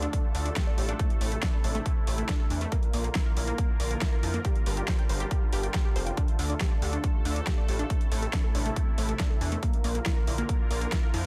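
Uplifting trance at 139 BPM in D minor, this emotional, soaring excerpt cut from a longer piece moves in a straight 4/4 through a Dm, Am, Bb, Gm7 progression. A punchy, overdriven electronic kick arrives at 0.1 s and sits up front, joined by a big-room dance kit of hi-hat and a huge, distorted snare. Underneath, a gritty, aggressive synth bass combines sawtooth, oscillator sync, sine and ring-modulated tones with a resonant filter sweep and saturation, pumping against the kick. A lush, detuned unison pluck spins arpeggios with a fast, decaying attack and a dub echo trailing behind it. Filling out the harmony, an evolving supersaw swell holds soft-edged, sustained chords that also breathe with the sidechain, all in a dry mix with little reverb.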